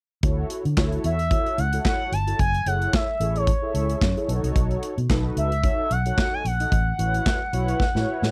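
Early-eighties boogie funk with a slick, late-night mood, this clip is taken from a longer piece and moves with a light sixteenth-note swing. A punchy, acoustic studio drum kit with a medium-tuned snare, hi-hat and handclaps sits up front alongside a dark, foam-muted fingered electric bass whose round, amped tone anchors the low end. Mellow synth brass plays the accompaniment softly in the background, its detuned sawtooth voice brassy and sustained, colored by chorus, vibrato and a filter sweep. At 1.1 seconds a smooth, expressive synth lead enters with a soft attack, its sawtooth-and-triangle blend carrying the melody up front with chorus and vibrato. The harmony glides through lush ninth chords, Dmaj9, F#m9 and B9, before settling on A69, and a drum fill at 7.8 seconds closes the passage. The sound is dry and close, with a 1970s-style studio character.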